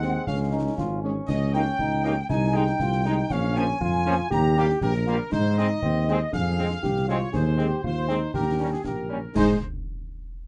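From the first beat, a festive, spirited military-style march for wind band strides along at 119 BPM in 2/4 in Ab major, its distant, dark trumpet section carrying the melody over a pure, bright small flute group and a clear euphonium with light vibrato on second lines, while mellow French horns sit in the background, a vintage-toned trombone section holds sustained chords, an up-front, smooth-topped tuba anchors the bass, and close, dry concert snare, bass drum and clash cymbals stay tucked behind, set in a moderate booth ambience with a warm, rolled-off production, the euphonium dropping out at 9.1 seconds just before the cut.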